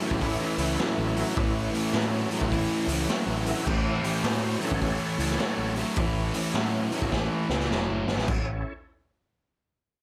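Driving and raunchy, this blues rock power trio cut leans into southern rock, swinging its eighths at 104 BPM in 4/4 and sitting in A mixolydian over a single A chord. A thick fuzz guitar, bright and double-tracked, lays down a low picked riff up front, while a growling picked electric bass adds overdriven weight from the bottom. The overdriven tonewheel organ takes the solo through the opening 8.3 seconds, its full, gritty sustained chords churning through a slow rotary speaker and chorus vibrato. A raw garage drum kit, saturated and mid-forward with a boomy kick and a rolled-off top, drives the groove with crash, hi-hat, kick and snare, then breaks into a fill from 7.1 to 8.3 seconds. A moderate club reverb gives the whole fragment, cut from a longer piece, the feel of a small, sweaty stage.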